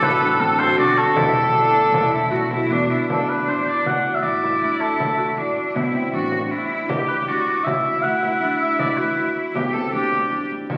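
Crackling like a very old 78 rpm record and steeped in a wet recital-hall reverb, this pensive, hypnotic contemporary chamber piece in 5/4 at 158 BPM, cut from a longer work, sets a distant oboe melody with light vibrato up front over a biting, intense bowed cello second line, ringing fingerpicked Celtic harp arpeggios, a woody, growly pizzicato upright bass and a small, bright frame drum, while a warbling, lo-fi, detuned pad with chorus holds mellow, nostalgic chords in the background until 3.1 s, and the oboe falls silent at 9.4 s.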